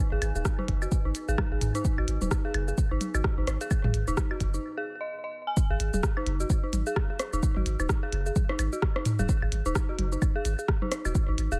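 An eerie, inharmonic FM bell riff with chorus, delay and sidechain pumping sets a hypnotic, cool mood in this dry minimal techno excerpt at 129 BPM in G# minor with swung 16ths, over a punchy, pitch-dropping sine sub bass, an up-front deep electronic kick, a clicky kit of cabasa, hi-hat and rim click, and a booming analog drum machine of rim click, toms and woodblock through digital delay, while a moody, detuned sawtooth pad with reverb and pumping hovers in the background until 4.6 seconds, just before a brief break gives way to the drop at 5.6 seconds.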